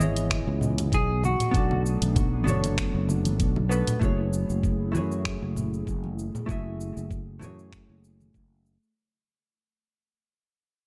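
A slightly broken-up electric guitar, picked through a small old amp with tape echo, opens this relaxed, wistful sunset chillout fragment alongside a dark, clean hollow-body jazz guitar, a breathy, detuned pad with chorus, a growly, up-front fretless bass, and a smooth R&B kit of warm hats, finger snaps and shaker; the lead guitar falls silent at 1.8 s. A knocking electronic kick joins at 0.3 s and background congas at 0.6 s, with a light swing on the sixteenths and a soft digital ambience surrounding the band. Over minor-ninth chords, the music fades out from 4.0 s to the end.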